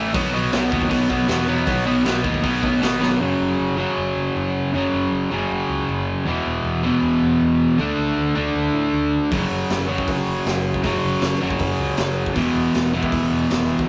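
Punk rock at 157 BPM in B mixolydian, energetic and upbeat, cut from a longer piece and captured as a rough rehearsal-room recording with light reverb, where an up-front, double-tracked distorted electric guitar drives the riff through chords from B5 to F#5, E5 and D5 over a growly picked bass sitting in the background, while a gritty, saturated garage drum kit with a punchy kick and pumping room sound plays until a fill at 3.0 seconds, drops out, and returns at 9.3 seconds.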